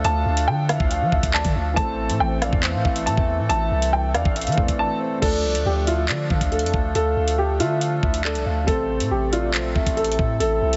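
Ominous and tense, this short cut from a longer drill track moves at a half-time feel over a brooding progression from D minor to A minor. A dark upright piano carries the melody with a woody, slightly detuned tone and audible action noise, while a soft octave-layered synth lead adds a round second line treated with chorus, tremolo and delay. Beneath them, a mellow baby grand piano sits in the background with long sustain, and an accordion holds reedy, sweet sustained chords with a light tremolo tuning. A deep, sine-like 808-style bass and an electronic drum kit with a knocking kick, metallic hats, handclaps, rim clicks and crash cymbal sit up front, with the drums dropping out briefly from 4.8 to 5.2 seconds before the second section begins. The whole mix has a small-room ambience and a heavily compressed, radio-like sound with the top end cut off.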